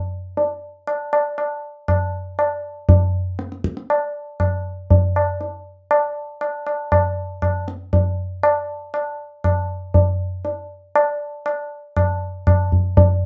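Introspective and meditative, this short fragment of Indian classical music, cut from a longer piece, unfolds in free time. A solo tabla carries the whole passage, entering at 0.4 seconds and sounding until 13.2 seconds. Its drums are tuned low and ring out with an acoustic, resonant tone. The instrument sits up front, captured in a small room with light reverb that lends the strokes a gentle halo. The unmetered pulse gives the brief passage a searching, contemplative quality.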